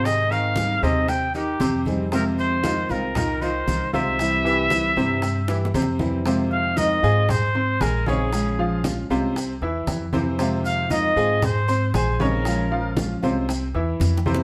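A breathy, whispered trumpet opens at once over fingerpicked nylon-string guitar, a bright, worn grand piano playing arpeggios, woody pizzicato upright bass and ringing, low-tuned congas, in this danceable, warm Cuban son and guajira excerpt at 116 BPM in F minor. The trumpet sits up front as an intimate, vintage-toned solo voice with vibrato and a soft attack, carrying the melody until it drops out at 13.0 seconds. Round, dry bongos and grainy, distant maracas slip in a moment later, the bongos staying tucked in the background with the hard-handed congas, while the piano's short-sustained brilliance shares the foreground with the trumpet. A fill at 5.5 seconds leads from the opening section into a second passage that cycles through Fm7, Ab, Bbm7 and C7, and another fill closes the cut. The band sounds like it is playing live in one room, wrapped in a moderate studio reverb.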